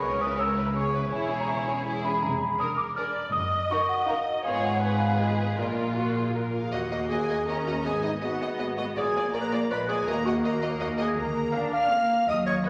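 A playful, whimsical cinematic film cue in Eb minor, this short excerpt from a longer piece moves at 162 BPM in a straight 3/4 with a magical, quirky air. A bell-like, delicate celesta carries the melody over the opening bars before falling silent at 6.3 seconds, while a lush, rich violin section shares the tune and a second violin section, close and expressive, weaves its own line. A focused, distant viola section fills in the accompaniment, and a smooth, even cello section joins a double bass section to anchor the bass with bowed vibrato. At 6.5 seconds a dark, roomy solo clarinet in classical style steps up front with a second line, just before the harmony turns to a minor-key progression around Ebm, Abm7 and Bb7. The whole ensemble sits in the generous reverb of a scoring stage, with a vinyl crackle lending the sound an old-fashioned patina.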